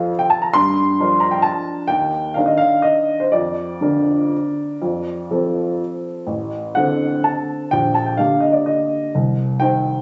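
Elegant and sparkling, this classical piano waltz in 3/4 moves with a supple rubato feel, taken from a longer piece. A solo upright piano with a woody, natural tone sits up front and ranges from A1 to C6 across the full 10 seconds. Captured on a phone in the room, it carries a moderate recital-hall reverb, and its highs are rolled off.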